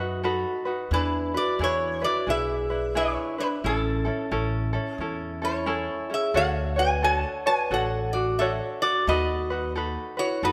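This Hawaiian excerpt drifts along at 88 BPM in 4/4 with a swung eighth-note feel, dreamy and relaxed across its 10.5 seconds. A lap resonator guitar carries the melody up front, its metallic, nasal slide tone picked with fingerpicks. Beneath it, a vibraphone played with soft mallets and its motor off adds a mellow, dark second line that rings smoothly. A bright, light tenor ukulele fingerpicks the accompaniment close to the listener, while a pizzicato upright bass on steel strings gives a woody low end. The four parts play from start to finish inside a moderate concert hall reverb, moving from B7 and E7 to Amaj7 before the harmony shifts to Dmaj7 at 6.4 seconds and settles on B7/D#.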